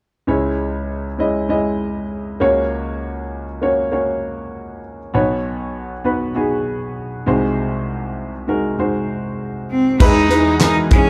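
Warm and hopeful, this short piano-driven pop piece moves at 99 BPM in a straight 4/4, cut from a longer work. A grand piano with a smooth, vintage tone and short sustain carries the accompaniment up front from 0.3 seconds, moving through C#m, F#/C#, Badd9 and G#7/B# across a span from B1 to D#5. Near the end, at 9.7 seconds, a single bowed cello enters close and focused, singing a small melody with vibrato. At 10.0 seconds the music opens onto an Emaj7 chord as an airy, breathy pad with a slow attack and chorus settles softly in the background, and a damped 70s drum kit arrives with a fat snare, tight kick, hi-hat, handclaps and a crash cymbal, dry and prominent. Light reverb gives the feel of a band playing together in one room.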